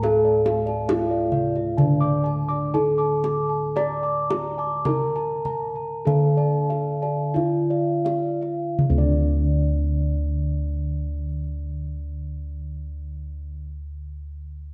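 A straight 4/4 pulse slows over the first 8.8 seconds, ranging between 40 and 73 BPM, in this hypnotic, stately Javanese gamelan passage cut from a longer piece, where a mellow, softly ringing bronze metallophone carries the melody over metallophone arpeggios struck with padded disc mallets, while round, beating bossed gongs play both arpeggios and a smooth, dark bass, and a tight, saturated kendang played with soft hands drops out at 9.5 seconds, all set in a moderate concert-hall reverb.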